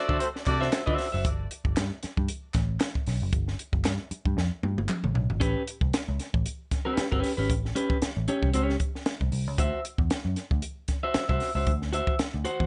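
A slightly broken-up, compressed electric guitar stands up front in this gritty funk clip cut from a longer piece, playing over a D9 chord, dropping out at 1.2 seconds and returning at 5.4 seconds as the harmony moves to A9 and then back to D9. A tight horn section with vibrato, octave doubling and tape echo flashes by only at the very start, while a dark, round, foam-muted bass and a dry cocktail kit with a punchy kick and high-tuned snare drive the swung sixteenth-note groove throughout. Crisp handclaps sit in the background of the first section, and a drum fill leads into the second, heard in light reverb with a dulled top end.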